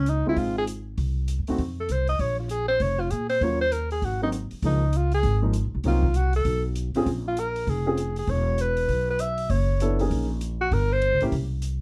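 Cool and smoky, this short cut from a longer piece is small-group jazz in the swing and bop vein, moving briskly at 197 BPM in 4/4 with a swung eighth-note feel in Bb minor. A breathy alto saxophone carries the melody up front, and its subtone, vibrato and scooped notes give the line a smooth, jazz-styled voice. Pizzicato upright bass also sits forward, woody and growly with steel strings, while a warm baby grand piano adds natural-sounding accompaniment from 0.3 seconds. Further back, an open jazz drum kit in a small room keeps time on hi-hat and a boomy kick with a smooth, dark tone. Light reverb rounds out the group, and at 4.6 seconds the harmony moves from Dbmaj7 and Ebm7 into a second section that passes through Db69, Gb69 and Gdim.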